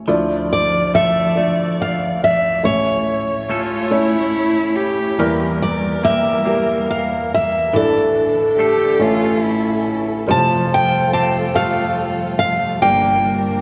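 A wet church reverb with a long 3.2-second tail surrounds this reflective, intimate excerpt of an acoustic folk-pop ballad in D minor, moving slowly at 47 BPM in a straight 6/8. Up front, a picked steel-string dreadnought guitar carries the melody with a full-bodied tone and audible finger squeak, while a felt-muted upright piano supplies soft, mellow accompaniment, its action noise clearly audible. A clean, compressed semi-hollow electric guitar plays fingered arpeggios through a harmonic tremolo, and a dark chamber string section sustains bowed chords with a smooth top in the background. From 3.5 to 10.1 seconds a solo cello adds a warm second line, bowed with a soft attack, expressive vibrato and portamento. The harmony drifts from Dmadd9 through A, Edim, Asus4 and Fadd9 before settling on Gm.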